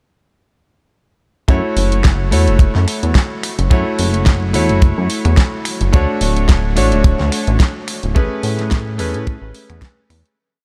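A four-on-the-floor kick at 108 BPM drives this short nu-disco piece in 4/4, with a 55% swing on the sixteenths giving the groove a gentle lilt. The kick is dry, tight and polished, sitting up front, while an electronic pop kit lays a disco backbeat of fat snare, finger snaps and closed and open hi-hats that sound layered and produced. A chorused synth bass plays a funky syncopated line with a glossy, nasal, retro tone, its pulse-wave and sawtooth character shaped by a filter pluck with a fast attack. A bright, clangy electric grand piano carries held chords with syncopated pushes in drop-2 voicings, pumping against the kick and trailed by a diffuse ambient delay. In F# minor and tuned to A4 = 435 Hz, the harmony moves from F#m7 to Dmaj7 and then Amaj9 in a sleek, cosmic mood under light studio reverb. The whole band enters together at 1.5 seconds and begins fading out at 7.4 seconds until the close at 10.4 seconds.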